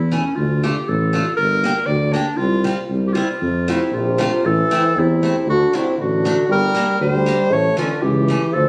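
Captured on a phone in a recital hall, the recording carries a moderate, lingering reverb and a sense of studio ambience around the players. This is a festive, bouncy alpine folk dance tune in 2/4 with a straight feel, a short cut taken from a longer piece. A bright, close-miked clarinet sits up front with the melody in a classical style, while a mellow, smooth-topped tuba, also up front, carries the bass beneath it. A picked steel-string parlour guitar, boxy and lower in the mix, fills in the accompaniment. At 3.7 s a warm euphonium joins with a second line, sounding distant and roomy. The tune moves into a new section at 4.4 s, its harmony running through Am, D and Gm before settling on a closing A chord.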